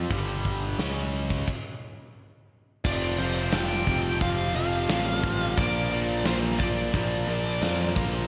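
A straight 4/4 pulse at 88 BPM drives this heavy hard rock excerpt, where a biting overdriven guitar and a tight, distorted guitar sitting in the background play the riff over a growly, bright picked bass and a big, up-front acoustic kit with a tight kick and medium-tuned snare. After a stop from 1.5 to 2.8 seconds, the riff moves from G5 and C#5 onto F and Bb as a smooth overdriven lead guitar enters with a high melody. A lush hall reverb gives the whole piece a big arena sound.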